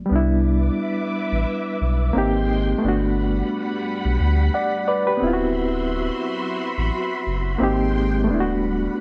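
A barky, reedy electric piano with light overdrive, fast tremolo and a cassette-tape tint sits up front in this nostalgic, cosy hip hop excerpt at 88 BPM in G major, swung gently on the 16ths, over a deep, sine-like sub bass and mellow, phased string-machine cellos with slow-attack ensemble chorus, moving through chords like Cmaj9, Abmaj7, Gmaj7 and D13 in a small, moderately reverberant room.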